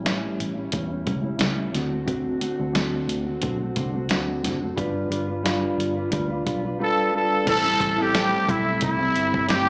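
Heard as a live gig through a club PA with small-speaker sound and light reverb, this hazy, mellow indie and bedroom pop excerpt in A minor moves at 89 BPM with a gentle swing. A dark, chorus-drenched electric guitar carries a filter sweep until 7.5 seconds over a round, foam-muted bass and a gritty, thumpy sampler-style drum kit. A raspy, growling trumpet takes the lead at 6.8 seconds, and a worn, slightly out-of-tune tine electric piano slips in behind it at 7.4 seconds as the chords move from A7 through D7 and G7 to Am7.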